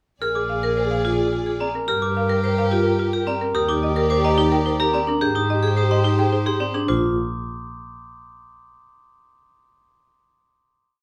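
A straight 3/4 pulse at 108 BPM drives this bright, propulsive minimalist classical piece in Bb mixolydian, where a buzzing, woody marimba carries the melody in a repeated short cell, a metallic vibraphone with fast motor vibrato and a bell-like glockenspiel ring out repeated arpeggio cells, a distant French horn adds a pulsing second line in the background, a rich, close violin section holds swelling bowed chords, and an up-front bowed double bass plays long notes with expressive portamento, moving through Bb7, Gm7, Ebmaj7 and Abmaj7 before settling on a final Bb chord at 6.9 seconds in light reverb.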